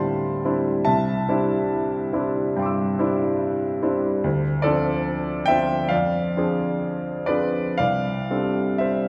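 Impressionist classical solo piano in C major, luminous and serene, this excerpt of a longer piece drifts with rubato at 58-74 BPM as a clear, present grand piano rings with long sustain across a range from C2 to E6, moving through Dm11, C69, Dm7 and a shaded Fm6 before resting on C69 at 7.8 seconds, all set up front yet heard from further back within a wet recital hall reverb.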